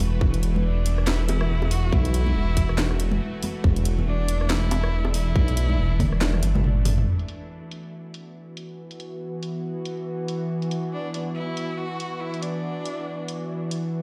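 A half-time 4/4 groove at 140 BPM, swung 58% on the 16ths, drives this heavy, cavernous deep dubstep piece, opening on an E5 chord with a tight, up-front electronic kick, a garage kit with a cracking snare, warm hats and toms under low-pass filters, and close, dry congas and bongos with dub echo sitting in the background. A rumbling, detuned sawtooth bass anchors the drop until a drum fill hands over to the second section at 7.1 s, where a tense, string-like drone with ring modulation and vibrato takes a filter sweep. A single rich, focused cello, bowed with vibrato and softened by a low-pass filter and dub echo, sings above and returns at 10.9 s, all heard as if on a big sound system in a bare room with large studio reverb.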